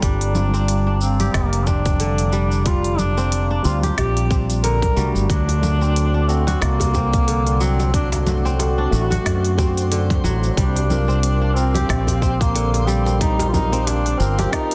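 A tight, tape-warm electronic kick and a produced kit of woody snare, smooth hi-hat, congas and shaker swing the 16ths at 91 BPM in 4/4, with a quiet, rattling djembe joining at 5.5 seconds, setting a meditative organic downtempo groove in G minor that moves from Gm7 to D7 to C9sus4. Up front, a dark, round fretless bass with lush chorus and sidechain pumping anchors the low end, while a crisp, ringing fingerpicked kora plays delayed arpeggios and a bright tine electric piano, also pumping, sits in the background beneath a faint, warbling, nostalgic lo-fi pad. Over this, a distant, roomy duduk carries the folk-style melody with vibrato, scooped notes and delay, and from 6.4 seconds a very quiet twinkling granular texture adds an octave-up shimmer to the dense, heavily limited mix.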